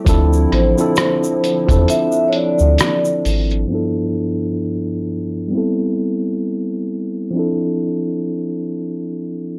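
A swung 4/4 groove from a muffled, pitched-down sampler drum kit with a thumpy kick, hi-hat and rim click drives the opening of this melancholic, nostalgic lo-fi hip hop fragment, alongside a grainy tube shaker, a deep, round sub bass and a hollow, flute-like pad in the background. A clean tine electric piano carries the chords up front while a soft-mallet vibraphone rings out a brief, mellow line with slow motor vibrato and analog delay, and the kick drops out at 1.9 seconds. At 3.7 seconds the other parts stop, leaving the electric piano alone under a filter sweep until 9.6 seconds in a dry, gritty recording.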